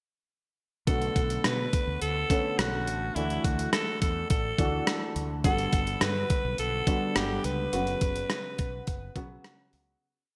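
A straight 4/4 pulse at 105 BPM drives this urgent, dramatic 1980s-style pop piece in B minor, where a thumpy, overdriven 12-bit drum machine with gated reverb and a big backbeat sits up front beneath a raspy, growling alto saxophone solo of scooped, motif-based phrases with light vibrato, a round, syncopated fretless bass line with slides, and open push-rhythm baby grand piano chords bathed in lush chorus, over a Bm7, Dadd9, Gmaj7 and F#sus4 progression in a bright, hall-reverb production that fades out from 7.7 seconds.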